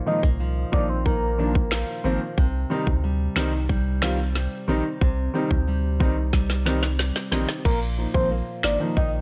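A fingerpicked flamenco guitar opens this bouncy, sultry dancehall excerpt in C minor at 91 BPM, its arpeggios soon joined by an intimate concert grand piano with audible action noise, a deep, punchy sine sub bass with a pitch-drop attack, and a tight, up-front electronic kit of kick, woody snare, finger snaps and crash. A round, mellow octave-layered synth lead, treated with chorus, phaser and delay, sings a brief melody at the very start and returns at 7.7 s. A drum fill from 6.3 s leads into that return, while the dry, close-sounding mix moves from Bbsus4 to Cm and back to Bbsus4.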